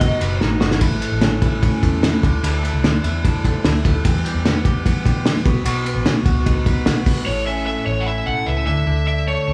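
Jangly indie pop with a nostalgic, youthful glow, cut from a longer piece, where a bright, twangy twelve-string electric guitar rings out arpeggios throughout over a round, foam-muted fingered bass, while a muffled, cloth-damped drum kit with a fat snare and dark cymbals thuds up front, plays a fill at 0.4 seconds and then drops out at 7.2 seconds, just as an overdriven lead guitar from a small cranked amp, heard only briefly at the start, returns with its melody at 7.3 seconds in a band captured live in one room with light reverb.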